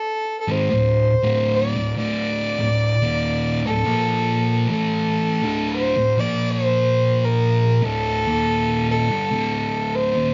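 A thick, double-tracked fuzz guitar sits up front, its picked, distorted riff grinding low from 0.5 seconds while a dark fiddle carries the melody from the very start. This short metal excerpt moves at a slow 57 BPM in 4/4 with a swung eighth-note feel, set in D Phrygian with tuning at A4 = 439 Hz. The mood is ominous and hypnotic. The single bowed fiddle has a woody, smooth-topped tone with light vibrato, staying in a narrow upper range, while the guitar's fuzz gives it a heavy, saturated weight. The harmony rests on D minor before shifting to Bb5 at 6.2 seconds and D5 at 7.7 seconds. The two players sound as if they were recorded live together in one room, with moderate studio reverb and a dulled, rolled-off top end.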